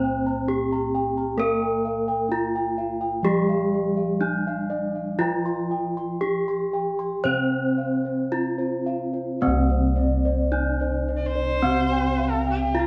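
A wooden-mallet bronze metallophone carries the melody up front, its ringing tone slightly vintage and band-limited, with paired tuning that gives each note shimmering beats. This short, ceremonial and serene fragment of Javanese gamelan moves at a slow 54-66 BPM in a straight 4/4, in C slendro tuned to A4 = 441 Hz. Beneath the lead, a lower metallophone struck with a horn mallet adds a dark, smooth accompaniment. Two sets of bossed gongs fill out the texture, one playing high arpeggios and the other a bass line, both round and beating in their bronze resonance. At 9.4 s the music shifts into a new section, where a mellow, airy metallophone played with padded disc mallets adds soft arpeggios in the background, and at 11.2 s a woody, bowed erhu enters with a dark second line full of vibrato and portamento. The ensemble plays live together in one studio room with a moderate reverb that lets the bronze tones linger.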